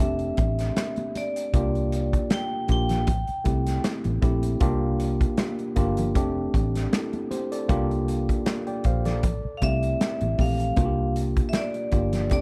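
A dry, close-sounding excerpt of lush 1970s-style soul with a smooth, silky mood and a gentle swing, cycling through F69, C9sus4 and Am7 chords. A worn, slightly out-of-tune tine electric piano sits up front carrying the accompaniment, over a dark, round, foam-muted fingered electric bass and a punchy modern studio drum kit that enters at 0.2 seconds with a medium-tuned snare and a pumping room sound. A metallic, ringing vibraphone struck with hard mallets and given a slow motor vibrato states the melody in a boxy small room until 3.8 seconds and returns at 9.6 seconds, while bright, high-tuned, saturated congas played with hard hands stay very quiet underneath.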